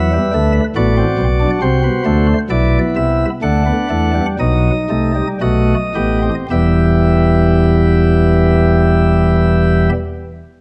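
In a straight 4/4 pulse between 53 and 73 BPM that slows over the first 6.5 seconds, this serious, solemn excerpt of a baroque-style four-part fugue in E minor features a solo chamber organ with sparkling, chiffy flute stops placed up front and ranging from E1 to F#5, moving from Em through F#dim/A, B7sus4 and B7 back to Em at 6.5 seconds within a reverberant recital hall and a layer of vinyl crackle.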